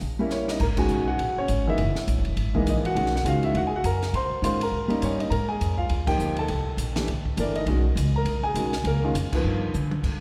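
Jazz piano trio in a smoky, late-night swing, a short cut from a longer piece, set in a church-like hall with a long, wet reverb. A smooth, vintage grand piano carries the melody up front beside a woody, growly pizzicato upright bass, while a compact cocktail kit with dark cymbals, a high-tuned snare and a punchy kick sits further back. Drum fills at 0.3 and 9.7 seconds and band accents at 0.7 and 6.0 seconds punctuate a rich chord progression that ends on G7b13.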